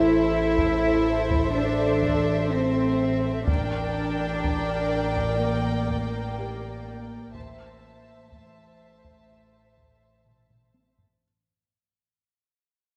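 Eerie and uneasy, this suspense cue from a cinematic film score sets two bowed, sul tasto violin sections on a pure, floating melody and second line over a woody viola section with vibrato, an up-front cello section and a rich double bass section on a low A, while a felt-muted upright piano with audible action noise sits mellow in the background and a heavy-stick taiko ensemble enters at 0.6 s and plays a fill from 10.3 s as the passage fades out in a dark, moderate scoring-stage reverb.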